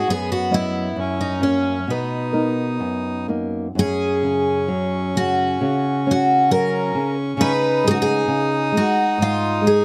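Rubato in 2/4 at 66 BPM, this tender, nostalgic fado-style ballad excerpt in B major, shifting to F# major at 3.8 s, places a shimmering, octave-doubled picked twelve-string guitar melody and a small, fingerpicked nylon-string accompaniment up front, with a reedy, hollow accordion second line beneath them, in a dark production with light reverb.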